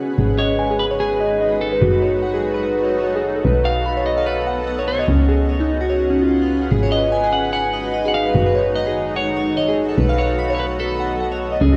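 A harp-like synth pluck sits up front in this melancholic, intricate IDM piece, cut from a longer work, ringing out mellow arpeggios through chorus, analog delay and a filter sweep. A cloudy granular pad opens the recording on its own at 0.0 seconds, holding blurred, evolving chords with its own built-in reverb. The pluck and a woody, round FM bass join at 0.2 seconds, the bass sitting dark and close beneath. A clean electric guitar enters at 0.4 seconds with a dark, picked melody, bathed in spring reverb and analog delay. The lightly swung 4/4 groove moves through a looping progression of G#m7, F#m6, B7 and C#7sus4, and the whole take has a dry, gritty hardware character with cassette tape coloring and a small room sound.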